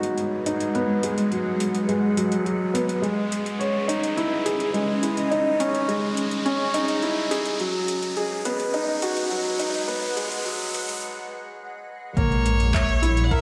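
A straight four-four pulse of overdriven handclaps and metallic hi-hats sits low under an intimate grand piano riff, with audible action noise and digital delay, and a cloudy, evolving granular pad that carries sustained minor chords in this cinematic, melancholic piano-and-strings electronica. An electronic riser and sub drop build tension through a filter sweep until a short break at 11.0 seconds. At 12.2 seconds the drop lands with a deep, overdriven electronic kick, a rumbling detuned saw bass with sidechain pumping, and a clear, distant violin with vibrato, all washed in a wet scoring stage reverb.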